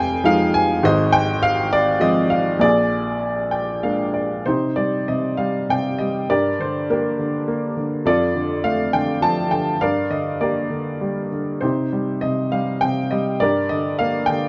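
A gently flowing triple metre, stretched and loosened by rubato, carries this lyrical classical solo piano piece, which is cut from a longer work. The mood is bittersweet and brooding. A lone upright piano, woody and slightly detuned with a smooth, vintage character, sits up front and ranges from deep bass to the upper treble. An opening passage of rich seventh and sixth chords ends with a short piano fill from 3.2 to 4.5 seconds, after which the music settles into a darker minor harmony that moves between Cm, Gm and Dm/F. Close, detailed microphones catch the instrument's texture, while light reverb adds a touch of space around it.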